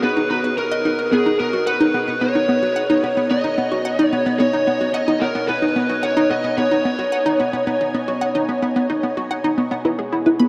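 A vast, echoing reverb with a long tail surrounds this short clip of ambient, sequencer-driven space music, and it sounds cosmic and expansive in a straight 4/4. Up front, a hollow, bouncy square-wave pluck plays a riff throughout, its detuned, chorused tone bright and thickened by a sub octave and a touch of tape echo. Beside it, an electric lead guitar through a small cranked amp carries the melody with an overdriven, picked sound and tape echo until 9.3 seconds. A lush, vintage string machine sits in the background, sustaining full ensemble chords with a slow attack and a shimmering ensemble chorus. Near the close, at 9.9 seconds, the harmony moves from Badd9 to E as a soft, round, dark pluck enters with gentle chorused arpeggios.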